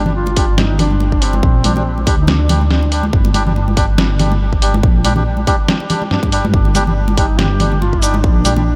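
Deep dubstep at 141 BPM in G minor, this brooding, cavernous excerpt moves with a half-time feel and a light swing on the sixteenths, sitting on a G5 chord throughout. A dark detuned saw bass rumbles up front from the start, deep and beating with a fast attack and long sustain, while a punchy, layered electronic kick drum enters at 0.4 seconds alongside a compressed, pitched-down trip hop sampler-style kit of hi-hat, shaker and a muffled, medium-tuned snare. Bright, thin-skinned congas, damped and acoustic, add dub-echoed percussion from 0.1 seconds. A reedy, nasal melodica plays echoing stabs in the mid register. A warm, distant duduk carries the melody with vibrato and scooped notes in a folk style, playing at the opening and returning at 7.2 seconds, its dub echo trailing into light reverb and small room ambience.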